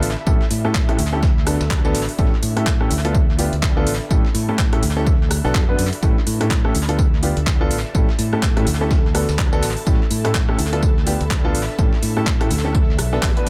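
This piano house cut feels joyful and uplifting, led by a woody upright piano riff moving between A7, D6 and Dm6, treated with tape echo and sidechain pumping, over a bright fingered electric bass that is also sidechain pumped. A punchy analog kick sits up front from 0.3 seconds, alongside a garage kit of crisp hats, handclaps and rim clicks that plays from the start. Further back, a gritty, compressed breakbeat kit adds a high-tuned snare, hi-hat and tambourine, with 16th-note swing giving the groove its shuffle, while an ethereal, airy pad with chorus, phaser and a slow attack hovers in the background of a dry, echo-heavy mix.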